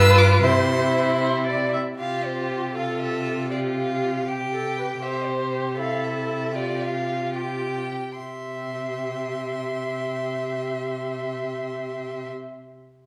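A quick classical-period movement for string quartet in 6/8, restless and stormy in mood, cut from a longer piece. The first violin carries the melody high with soft-attacked, expressive vibrato and portamento over a smooth, even second violin line, while a distant viola adds sliding, expressive accompaniment and an up-front cello anchors the bass with a focused tone. The music slows between 4.3 and 8.2 seconds as the harmony shifts between C and Csus4, all set in the wet reverb of a recital hall.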